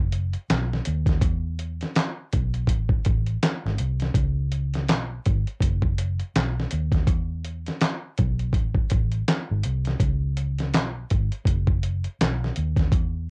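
A dark, round, foam-muted electric bass opens this sultry, soulful neo-soul excerpt at 82 BPM in C# minor, joined almost at once by a gritty, overdriven sampler-style drum kit with a thumpy kick, fat snare, hi-hat and handclaps, both parts sitting up front over a swung sixteenth-note feel, with tube saturation on the bass, cassette-tape grit on the drums and light reverb over a home cassette recording.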